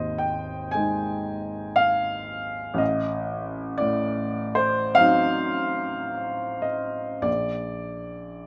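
A warm, open baby grand piano sits up front with long sustain, playing alone from Ab1 to Ab5 in this brief fragment of a romantic classical nocturne. The mood is nostalgic and tender, moving in a slow 4/4 at 48-61 BPM with a free, rubato feel, set in light reverb. The harmony rests on Ab, shifts to Adim7 at 2.8 seconds, and arrives on Bb at 7.3 seconds.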